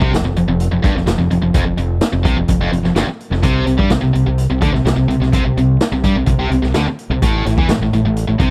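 A gritty, driving classic rock excerpt at 127 BPM opens with everything at once: a tight, bright distorted guitar up front and a second overdriven guitar set further back, both picking a riff in the low register over F5, C5 and then Am at 7.2 seconds. A growling fingered bass, overdriven and punchy, sits beneath them, while a raw garage drum kit of hi-hat, kick and snare comes through with a saturated, mid-forward sound and a rolled-off top. The whole clip runs 8.5 seconds and sounds like a dry, close 1970s-style studio recording in a small room, tuned slightly below standard pitch.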